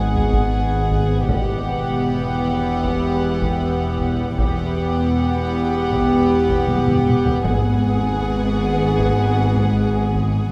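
A dark, intimate violin section carries a soft sul tasto melody over a floating second violin line and pure viola accompaniment in this eerie, mysterious suspense film-score fragment, while woody, distant double basses and rich cellos sit in the background beneath a calm, detuned, organ-like sine drone with ensemble chorus, and a large-room taiko ensemble struck with heavy sticks adds a fill at 6.7 seconds, the whole set in a reverberant recital hall as the harmony moves from G#m7 to Emadd9 and back.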